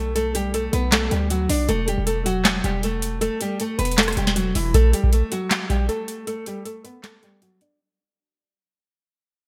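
This dark, brooding trap hip hop excerpt runs at 157 BPM in 4/4 with a half-time feel, in B minor, tuned slightly sharp to A4 = 444 Hz. A full-bodied, fingerpicked nylon-string guitar carries the melody through a low-pass filter, its deep classical tone complete with audible finger squeak, over chords that move from Bm7 to Em. A punchy, heavy 808-style bass with a sine core, a noise layer and a fast, decaying attack sits up front beneath it until 4.7 seconds. The booming analog drum machine drives the track with a deep kick, crisp snare, handclaps, rim clicks and metallic hats, all overdriven and pushed forward, with gated reverb and a short room on the snare, clap and hats. From 4.7 seconds the piece shifts to a new section over a rootless B7 as it fades out and a filter sweeps across the guitar, and a break arrives at 7.0 seconds. Light reverb and digital ambience frame the mix in a bright 1980s-style digital production.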